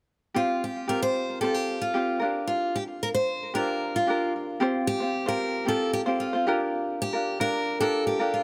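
Soaked in a roomy plate reverb with a long tail, this echo-heavy mix frames a carefree, sunny pop fragment cut from a longer piece. A light, fingerpicked ukulele sits up front with a warm accompaniment from 0.3 seconds, moving between Fsus2 and Gm7. From 0.4 seconds a bright, picked steel-string acoustic guitar carries the melody alongside it, its notes trailed by analog delay as the chord pair repeats in the second half from 4.6 seconds.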